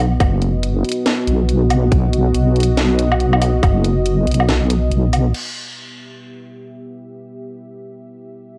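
A half-time groove at 140 BPM in 4/4 anchors this deep dubstep excerpt, its sixteenths swung at 60%, with a tight electronic kick sitting up front from 0.2 to 3.7 seconds. Around it, a garage drum kit adds a cracking snare, hi-hat, crash cymbal and woodblock, both drum parts tape-softened with studio reverb and cassette character. A deep, soft wobble bass built from detuned sawtooth and sine tones holds the low end from F#1 to B1, compressed and chorused with a fast attack, before it drops out at 5.3 seconds. Over the whole passage a dark analog pad spreads sustained chords from B3 to E5, full-bodied and evolving with a sub octave, slow attack and long release. It moves from B to E minor as the second section begins and carries on alone once the drum kit stops at 5.4 seconds, lasting until 8.6 seconds. The mood is meditative and cavernous, in E harmonic minor, with a light reverb and the hazy feel of a home cassette recording.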